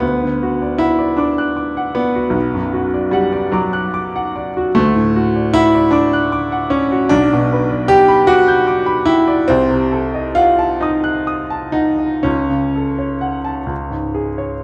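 A clear grand piano carries this mournful, yearning romantic nocturne entirely on its own, ranging from B1 up to G6 across the brief 14.6-second excerpt cut from a longer piece. The playing moves in 6/8 with free, breathing rubato, giving the phrases a longing quality. The harmony drifts through a darkened minor-key progression, passing a diminished chord near 9.5 seconds before settling onto a stark, open sonority at 13.7 seconds. The instrument sits up front and sounds intimate and natural, with audible action noise from the keys and hammers adding a close, human presence. Around it, a wet recital hall reverb lets each note bloom and linger, and the tuning sits at A4 = 438 Hz, a touch below modern concert pitch.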